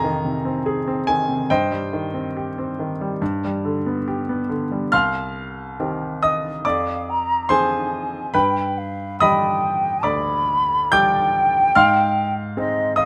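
A rubato 4/4 pulse at 70 BPM carries this solemn, elegiac romantic classical duo in C minor, cut from a longer piece, where a bright, up-front baby grand piano with audible action noise accompanies through chords such as Fm7, Cm/G and G7, and a hollow, distant silver concert flute with vibrato enters at 6.7 seconds to sing the melody, the pair heard through close, detailed microphones in light reverb.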